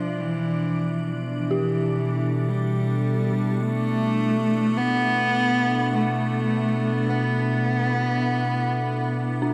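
Dark ambient drone in free time and E minor, this cavernous, dark passage is cut from a longer piece and set in a wet cathedral reverb. A rich, smooth bowed cello carries the melody up front with vibrato, over an evolving analog drone on B2 that carries a filter sweep, a sweeping resonant pad holding sustained chords in the background, and a crystalline glass pad adding airy texture. An eerie, inharmonic FM synth bell plays mellow arpeggios in the background, its decaying tones trailing into diffuse ambient delay like the cello's.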